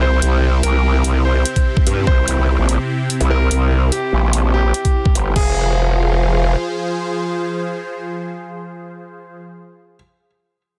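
Heavy wobble dubstep in a menacing half-time feel, this short excerpt sets a brilliant concert grand piano melody with delay over a lush, detuned supersaw pad that pumps under sidechain and phaser, while an aggressive, saturated growl bass wobbles up front until 6.6 seconds, overdriven crash and hi-hat from a small-room dubstep kit run to 5.4 seconds, and a knocking electronic kick sounds twice, within a dense, heavily limited modern master.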